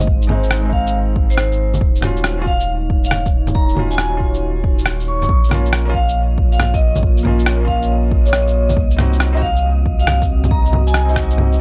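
Hard-mallet vibraphone carries the melody in this wistful, melancholic future garage excerpt, its bright, metallic ring trailed by tape echo from 0.7 seconds, sitting above a deep, dark ambient pad that holds sustained chords with chorus, built-in reverb and sidechain pumping. The groove moves at 138 BPM in 4/4 with a 66% swing on the sixteenths, in Bb minor, with a deep electronic kick and a soft, round dub sub bass up front, the bass also pumping with sidechain. Electronic bongos, shaker and rim click add a sampler-style layer that is compressed, pitched down and muffled, with a tape-warm tone. A felt-muted upright piano supplies intimate, mellow accompaniment from 0.3 seconds, colored by tape echo and sidechain pumping. From 5.8 seconds a breathy, wind-like tuned noise texture drifts in the background, washed in its own reverb, while the chords move from Ab through Ebm7 and Bbm to Cdim. 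Overall the sound is dry and gritty, with a hardware edge and little room ambience.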